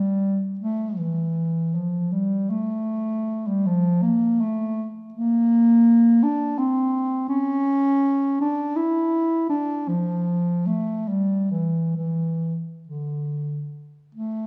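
Classical and mournful, this yearning fragment of a longer piece presents a solo bass clarinet, dark with a smooth top and placed up front, moving freely through a rubato triple metre over 14.5 seconds inside the lingering wet reverb of a recital hall.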